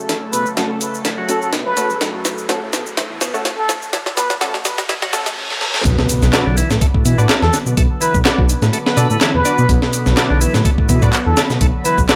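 A swirling, phased analog pad opens this swaggering, raw breakbeat excerpt, sitting in the background with chorus and a pumping sidechain motion. Almost at once a gritty, sampler-style breakbeat kit arrives up front with a thumpy kick and high-tuned snare, layered with electronic shaker and handclaps in a small room, while a bright tonewheel organ shouts a lightly overdriven riff through a slow rotary speaker with audible key click. A raspy, growling trumpet with plunger mute plays a jazz-style solo melody with scooped notes and wah-wah inflections, colored by an old-record, low-passed sound and echoing delay. The opening builds through drum fills, a filter sweep on the punchy orchestra-hit-like synth stabs and a faint riser, with a reverse cymbal from 4.9 seconds leading into the drop. At 5.9 seconds a deep, rumbling, detuned saw bass enters up front under a soft impact, and the trumpet returns at 7.4 seconds over the heavier groove.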